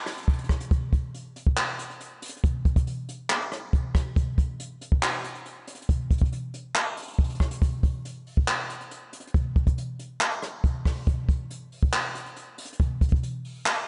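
A jazz brush drum kit carries this short hip hop excerpt, cut from a longer piece, its brushes sitting up front in a studio room with light reverb. The tempo reads 139 BPM in 4/4, but the half-time feel makes it move with a heavier, slower stride. The kit mixes handclaps, hi-hat and rim click with a boomy kick that gives the groove its weight. The mood is menacing and brooding, and the acoustic sound stays dark, with nothing above 10.4 kHz. The drums play from 0.1 to 13.8 seconds, as a section repeats at 11.1 seconds.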